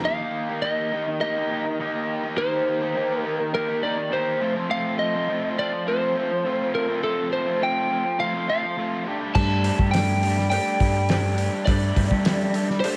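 Classic rock at 103 BPM in a driving, gritty mood, where a slightly broken-up lead guitar carries the melody over a bright, double-tracked garage guitar riff with overdrive and spring reverb, while a mellow tonewheel organ holds chords through a slow rotary speaker as the harmony moves from Eb to F to Gsus2, until a vintage cowbell appears at 9.3 s and, at 9.4 s, a woody, slightly detuned upright piano, a round hollow-body bass and a muffled, cloth-damped drum kit with a fat snare join in.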